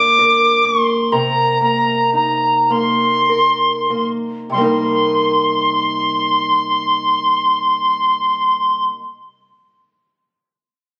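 Mournful and haunting, this short excerpt cut from a longer Celtic slow air drifts in a free, rubato 6/8 in C minor, with the pulse hovering around 30-45 BPM counted in dotted quarters and slowing down over the first 4.5 seconds. A reedy tin whistle carries the melody from the start, its pure, metallic tone softened by a gentle vibrato, a soft attack and a light chiff, sitting up front yet with a distant quality. Beneath it, a fingerpicked acoustic archtop guitar supplies a boxy accompaniment, moving from Bb to Cm7 at 1.1 seconds. The whistle falls silent at 8.8 seconds, leaving the guitar to finish alone at 9.0 seconds. The whole performance sounds captured on a phone in a recital hall, with a moderate reverb that lends a club-like room sound to the spare, lamenting phrases.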